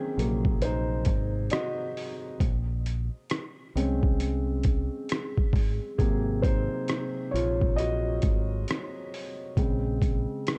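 A felt-muted upright piano leads this hazy, melancholic lo-fi hip hop excerpt, taking a solo across the whole 10.6 seconds. Its tone is soft and intimate, with thick felt and a cassette-tape, low-pass character. It moves between Ab7 and Bbm9 chords at a slow 67 BPM in 4/4, with a 60% swing on the sixteenths. From 0.2 seconds a deep dub fingered electric bass adds a round, dark low end, and a sampler-style drum kit of hi-hat, thumpy kick and rim click comes in alongside it. The drums sound compressed, pitched down, muffled and overdriven, as if re-recorded in a small room. All three parts sit up front in a dry, dark production, and the slight detuning to A4 = 439 Hz adds to the hazy, lo-fi mood.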